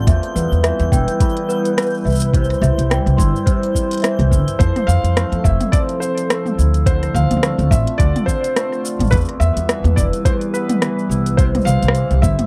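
This delicate, pastoral folktronica excerpt at 106 BPM opens with shimmering cimbalom arpeggios and a bright, bell-like celesta second line, both carrying tape echo, over warbling, nostalgic pad chords with chorus, a faint sparkling granular texture, and a woody, dark pizzicato upright bass sitting up front. An overdriven soft electronic kick and an organic electronic kit of cabasa, smooth hi-hat, rim click and toms drive a 16th-note swing through chords moving from Em and C to Fmaj7 and Dm7. At 4.6 s the celesta and granular texture stop and a muted, intimate felt-muted upright piano takes the melody with tape echo, all captured in a dry, close 1970s-style studio sound.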